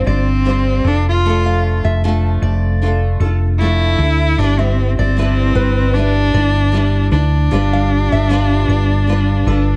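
Set in a small room, this heartfelt, easy-going acoustic pop excerpt with a lightly swung sixteenth feel pairs an up-front bowed cello melody, rich and expressive with vibrato, portamento and a soft attack, with a bright, full-bodied double-tracked nylon-string guitar, a dark, round, punchy hollow-body electric bass up front, and a warm fingerpicked steel-string acoustic guitar tracing arpeggios in the background.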